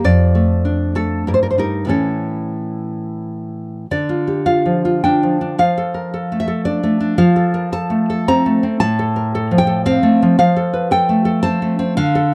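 In a rubato 3/4 that drifts between 88 and 114 BPM, this intimate, passionate romantic piece for solo classical guitar in D minor has a single fingerpicked nylon-string guitar, full-bodied and deep, sitting up front in a dry, close 1970s-style studio with small room ambience, its harmony turning from Dm/F through Eb/G to A before shifting at 3.9 s into a new section that settles on Dm and then F, all within a passage cut from a longer piece.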